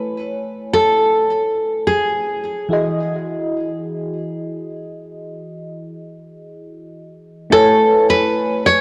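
Swung sixteenths in 4/4 give this sunny chillout fragment an easy, loping sway, as a soft, round FM electric piano with a faint noise layer plays accompaniment throughout, shaded by chorus, phaser, delay and a filter sweep until 7.5 seconds. Up front, a full-bodied, fingerpicked nylon-string guitar carries the melody with audible finger squeak and a touch of delay, playing over the opening Amaj9 until 2.7 seconds and returning at 7.5 seconds as the harmony moves back from Emaj9 to Amaj9. A lush hall reverb and the warbly pitch drift of worn cassette tape give the whole fragment a hazy, nostalgic glow.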